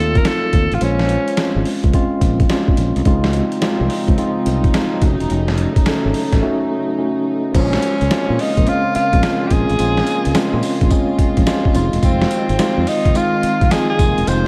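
New jack swing R&B with a punchy, confident swagger and a shuffled groove, cut from a longer piece, built on a gritty, compressed, pitched-down sampler drum kit with a thumpy kick, a growly fingered electric bass and a mellow, clean tine electric piano carrying the chords up front with slapback echo. A bright, vintage-toned tenor saxophone with vibrato and scooped notes, treated with slapback and tape echo, states a brief phrase at the start and returns as the lead at 7.6 seconds. Soft, floating bowed strings enter at 3.0 seconds to sit in the background, and a concert hall reverb gives the mix a big arena sound.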